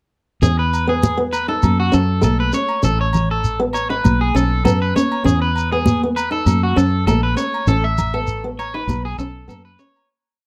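At 0.4 s a joyful, danceable highlife guitar band groove in E major starts at 99 BPM with a light swing, led up front by a twangy, slightly broken-up electric guitar playing an arpeggiated ostinato with subtle chorus and slapback echo, over a boxy fingerpicked steel-string acoustic guitar ostinato and a round, foam-muted fingered electric bass in a dotted figure. High-tuned congas struck with hard hands and a grainy, mellow shekere sit close and dry, while agogo bells join at 0.7 s with a low bell time line in the background. The chords cycle through E, F#m, A and B5 in a dry, close 1970s-style studio sound, and the piece fades out from 7.7 s to its end at 10.1 s.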